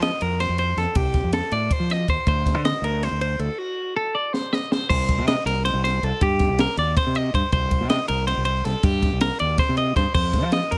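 Wistful and restless, this math rock and midwest emo excerpt moves at 320 BPM in 7/8, with a bright, twangy clean electric guitar picking plate-reverbed arpeggios up front over a growling, overdriven fingered bass and a dark, smooth compact cocktail drum kit with a high-tuned snare and punchy kick, all under light reverb, pausing for a break at 3.6 seconds with a drum fill before the second section arrives at 4.9 seconds, as the chords move from F9 through D7b9 and Cm7 to F7(no3).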